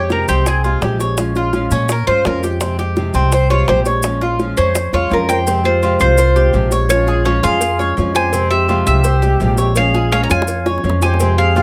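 Close, detailed and nearly dry, this danceable, sultry stretch of Cuban son and guajira is cut from a longer piece. A mellow, metallic tres carries the melody up front over a woody, growly upright bass, while a second tres picks arpeggios and a boxy, fingerpicked nylon-string guitar adds warm accompaniment. Round, low-tuned bongos and cowbell sit in the background with grainy maracas, a drum fill arrives at 4.9 seconds and again at 10.3, and a breathy, bright concert flute with vibrato enters at 5.3 seconds to play a second line.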